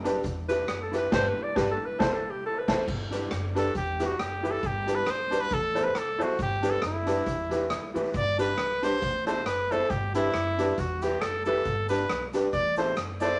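A swung 137 BPM ska groove in G major carries this cheerful, bouncy excerpt, with a street-band drum kit's boomy kick and dark cymbals, a woody pizzicato upright bass, dark slightly detuned upright piano stabs, a mellow background electric guitar with spring reverb and dub echo, and a very quiet grainy cabasa backing a breathy, whispered alto saxophone solo until 2.8 s, before a clear, punchy, up-front trumpet takes the melody from 3.6 s over a cycling Em–G–Am–G progression in a moderate club reverb.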